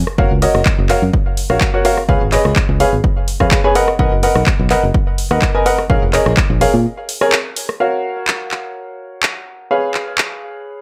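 Lightly reverberant and punchy, this joyful, feel-good piano house passage sets a clear, up-front baby grand riff with delay and sidechain pumping over a foam-muted fingered electric bass with tube saturation and pumping of its own, a tape-warm electronic kick drum, and a house drum kit of handclaps, hi-hat and rim click, until the kick and bass drop away by 6.8 s for a brief break before the piano and kit carry the final section from 7.8 s.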